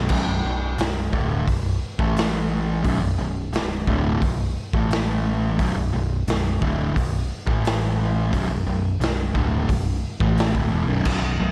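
A double-tracked fuzz guitar grinds out a dark, picked riff over a punchy, overdriven fingered bass and a raw garage drum kit with a tight kick, medium-tuned snare and rolled-off top, circling between B minor and A in an 88 BPM, hypnotic, ominous stoner and doom metal excerpt cut from a longer piece, set in a small room with light reverb.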